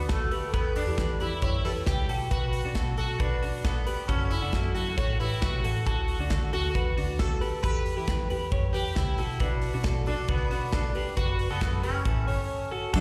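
A buzzing, shimmering sitar carries the melody over twangy twelve-string electric guitar arpeggios, both with slapback echo, alongside a dark, foam-muted picked bass from the very start, while a polished studio drum kit with a punchy kick and bright cymbals joins almost at once in this breezy, nostalgic jangly indie pop at 136 BPM in D major. The chords move through D6, Em, Bm and F#m before landing on A at 12.1 seconds, just ahead of a short break at 12.5 seconds, and at 12.9 seconds a mellow, chorused organ-string chord appears just as the cut ends. The whole performance sounds like a live gig heard through a venue's PA, with recital hall reverb and a small-room ambience.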